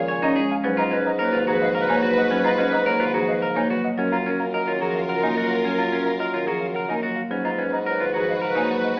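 In a steady, straight three-beat metre, this short passage from a longer minimalist classical piece moves with a hypnotic yet urgent pulse. A polished grand piano with long sustain carries the melody, while a vintage-toned clarinet sits in the background with a second line. A lush, bowed violin section holds smooth chords with vibrato, and a close-miked bassoon anchors the bass with light vibrato. A woody marimba, struck with medium mallets, fills in the accompaniment, joined by bright, picked arpeggios from an up-front clean electric guitar and soft, airy arpeggios from a distant flute. The harmony cycles through A#m7, G#m11 and F#maj7 before returning to G#m11, all set in a large, wet studio reverb and filtered through an AM radio sound.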